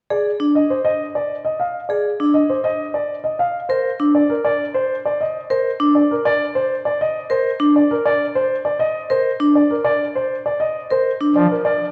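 A concert grand piano and a vibraphone enter together at 0.1 s in this meditative, hypnotic stretch of minimalist classical pattern music, moving at 100 BPM in 3/4 with a straight feel in F dorian. The piano carries the melody between Bb4 and F5, its tone warm with a deep bass and placed up front. Just beneath it in register, the vibraphone plays arpeggios from D4 to Bb4, struck with medium hard mallets and the motor off, giving a dark, smooth, ringing metallic sound that also sits close to the listener. The harmony begins on a rootless Fm7, drifts into an unharmonized passage, and arrives on Bb at 10.7 s. At 11.4 s a pipe organ on foundation stops sounds a brief, thick F3 with a romantic voicing. The whole excerpt sits in a moderate scoring-stage reverb and carries the worn, warbling pitch drift of old cassette tape.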